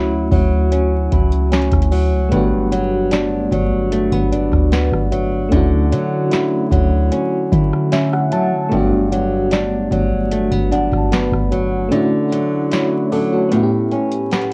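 A tender, smooth contemporary R&B passage in D major at 75 BPM opens with a fingerpicked flamenco guitar playing up-front arpeggios with finger squeak, a mellow FM electric piano with tremolo, and a deep, round 808-style bass, soon joined by a booming analog drum machine with crisp snare, metallic hats and rim clicks; a delicate, slightly out-of-tune celesta with tape echo drifts in the background from 5.1 seconds, the electric piano adds a fill at 7.5 seconds, and at 11.9 seconds the bass and kick drop away as the Dmaj9 chord gives way to A9, all within a dry, cassette-worn home recording dusted with vinyl crackle.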